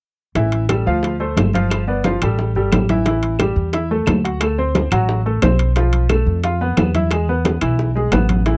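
At 0.4 seconds a bright baby grand piano, upright bass, bongos, congas and timbales launch together into a driving, fiery salsa groove at 178 BPM in A minor, and claves join at 0.7 seconds, sounding woody and distant in a large room in the background. Up front, the piano has a brilliant, worn, intimate tone, with short sustain and audible action noise, as it accompanies a progression that moves from A5 through Dm7 and G7, then on to D6, Fmaj7#11 and E. The pizzicato upright bass, also up front, sounds warm and acoustic with steel strings. Behind them, the low-tuned congas ring with a compressed, saturated edge under soft hands, and the high-tuned bongos sound tight in a small room. The metal-shell timbales come across resonant, close and dry. The dry, close 1970s-style studio sound carries only light reverb, and this passage is cut from a longer piece.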